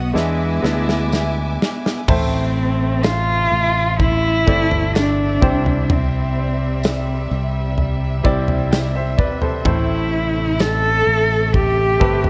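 A worn, warbling cassette-tape sound with gentle pitch drift, light reverb and small-room ambience colours this short cut from a heartbroken, melancholic pop ballad in A minor, moving slowly at 64 BPM in a straight 4/4. A dark, woody cello carries the melody up front, bowed sul tasto by a single player with vibrato and portamento, sounding somewhat distant. Beneath it, a clear, polished baby grand piano supplies the accompaniment, while a lush studio string section holds smooth, even chords from afar. A fingered electric bass sits up front with a warm, direct and amped tone, and a natural acoustic drum kit with a punchy kick and medium-tuned snare opens with a fill that runs until 2.1 seconds. An earthy violin section adds a brief second line with light vibrato that stops at 2.0 seconds, and a jingly tambourine lingers in the background from 1.1 seconds, as the harmony settles from E7 onto A minor, shifts to C and returns to A minor.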